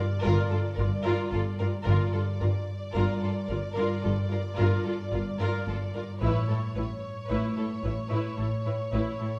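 Dark and steeped in a wet scoring-stage reverb, this eerie, ominous suspense film cue sets a mellow, round marimba riff played with soft mallets against smooth, bowed string sections: two violin sections with vibrato carry the melody and a second line, a distant, lush viola section supplies accompaniment, and a rich cello section and double bass section sit in the background as the bass, while the harmony moves from Gm7 to Aadd9 at 6.2 seconds.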